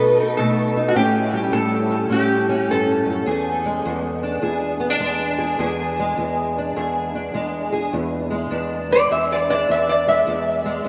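Swaggering and gritty, this acoustic country blues excerpt swings at an easy walk, its chords moving from B7 to A7 and settling on E7. A fingerpicked steel-string parlour guitar with dark, boxy old strings carries the accompaniment throughout, touched by ensemble chorus. A metal-body resonator slide guitar, nasal and metallic under fingerpicks with lush chorus and tape echo, states the melody at the start and returns at 8.9 seconds for a steel-bar solo. Both guitars sit up front in a dreamy mix soaked in a huge, lingering reverb.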